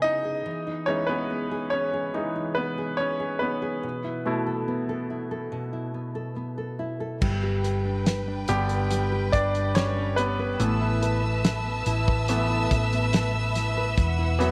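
A brilliant, polished grand piano carries the lead throughout this hopeful, heartfelt pop ballad excerpt at 71 BPM in 4/4, backed from the start by a full-bodied, fingerpicked nylon-string guitar playing arpeggios over chords such as Emaj7 and B7sus4. At 7.2 seconds the arrangement opens up as the harmony moves to G and Asus2: a rich, vibrato-laden studio string section holds sustained chords, a round, punchy hollow-body electric bass sits up front, and a dry 70s drum kit adds a fat snare, tight kick and dark cymbals. A moderate echo chamber reverb gives the whole a roomy glow before it settles on Esus2.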